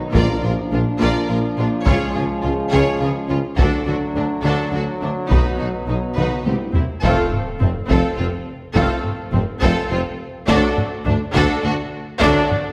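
Heroic and adventurous, this epic orchestral film-score excerpt in 3/4 at 104 BPM sets a distant, intense violin melody over a rich background violin line, clear violas, very quiet cellos, double basses and a tuba, while bright trombones and mellow French horns hold sustained chords and a taiko ensemble drives the rhythm with hard sticks. A soft-mallet timpani touches in only at the start, the harmony wanders through chromatic chords before a drum fill lands on F major at 7.0 s, where a huge, bright impact hits and a tight, mellow trumpet section adds stabs. A wet scoring-stage reverb gives the whole ensemble a spacious sheen.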